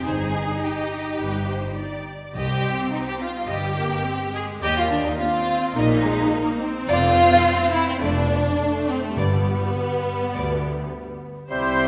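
Urgent and stormy, this quick classical-period orchestral excerpt sets lush, up-front violins playing a second line over focused violas, portamento cellos and double basses, while smooth, even upper violins carry the melody, dry calf-headed timpani strike at 2.3 and 9.2 seconds, and a punchy clarinet, airy silver flute, distant oboe, vintage-toned bassoon and mellow French horns join only at 11.5 seconds, all within a wet concert-hall reverb.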